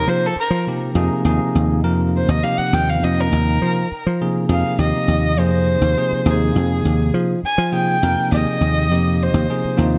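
Rolling in 6/8 with a straight feel, this ten-second jazz passage, cut from a longer piece, feels nocturnal yet driving as it rests on a single chord. A dark, woody bowed violin takes the solo throughout, one player singing with vibrato up front, its line trailed by a delay. Beneath it, a clean, bell-like tine electric piano supplies the accompaniment. A punchy, foam-muted thumbed slap bass sits prominently and directly in the mix, its electric tone crisp and dry. Light reverb and a small-room ambience frame a bright digital production with a 1980s flavor.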